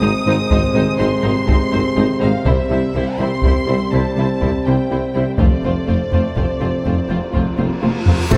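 Close, heavy-sticked taiko drums stand out from 0.5 s in this triumphant, majestic epic orchestral film-score excerpt in 12/8, where lush bowed violins carry a smooth vibrato melody over a rich, distant second violin line, dark violas and expressive cellos, while dark French horns and present trombones hold sustained chords above focused double basses and a warm tuba through Ab, C and F harmonies; bright cymbal swells, clash cymbals and concert bass drum join at 5.4 s, a drum fill from 7.6 s is joined at 7.8 s by a huge reverse cymbal and impact, and a very quiet, airy flute group and a distant woodwind section arrive at 8.3 s, all within a moderate scoring-stage reverb.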